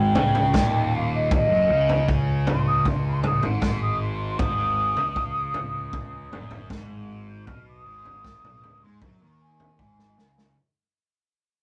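Hazy and trippy, this psychedelic rock fragment, cut from a longer piece, drifts along in a straight 4/4 feel as it fades out throughout. An airy, hollow silver concert flute carries the melody as a solo with vibrato and a crisp attack, sitting distant in the mix and reaching up to G6. Beneath it, a double-tracked fuzz guitar plays a low riff colored by distortion and phaser, up front, while an overdriven fuzz bass adds a round, punchy bottom. A vintage acoustic drum kit with a punchy kick, medium-tuned snare and toms joins at 0.2 seconds with a rolled-off top, closing with a drum fill at 9.8 seconds. The harmony moves from Eb7 to Ab5 at 4.4 seconds, all captured in a rough rehearsal-room recording with saturation and a short, moderate booth ambience.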